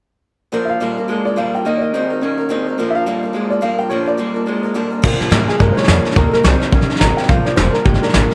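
Rockabilly at a brisk 213 BPM with a swung feel, this retro, upbeat Bb major excerpt from a longer piece opens at 0.5 seconds with a boxy, picked swing-style acoustic guitar and a twangy, slightly broken-up electric guitar riff through a small old amp, joined at 0.7 seconds by an intimate upright piano carrying the melody with audible action noise. At 5.0 seconds a thumpy pizzicato upright bass on gut strings and an up-front brush drum kit with a tight kick and rolled-off top enter as the music moves into a new section, moving between Bb and Eb. Light studio reverb surrounds the mix.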